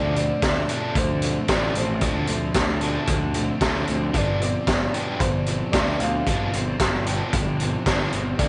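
Indie rock with a moody, cool air, this short excerpt cut from a longer piece moves in a straight 4/4, its harmony shifting from Dm7 to G7sus4 at 4.2 seconds. A dark upright piano carries the melody in a narrow upper span, its woody, boxy tone given long sustain and trailed by tape echo. Two biting overdriven guitars play riffs throughout, one sitting louder while the other rests in the background, coloured by analog chorus and tape echo. Underneath, a picked electric bass growls with fuzz and overdrive, direct and amped. A raw garage drum kit joins at 0.2 seconds with hi-hat, a high-tuned snare and a boomy kick, sounding saturated, gritty and up front with a rolled-off top. The whole mix sits in a small room under light reverb, its top end stopping around 10.3 kHz.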